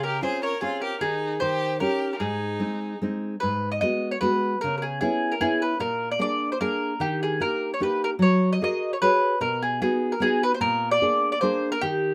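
Italian folk in the serenade style, this romantic, sunny excerpt moves at 150 BPM in a lilting, lightly swung 3/4, opening in Ab major before turning to G# minor at 3.4 s. A mellow, round mandolin carries the melody up front with picked double strings, while a full-bodied nylon-string guitar fingerpicks a classical accompaniment alongside it throughout. A single bright, focused violin adds a bowed second line with vibrato until 3.0 s, all set in light reverb.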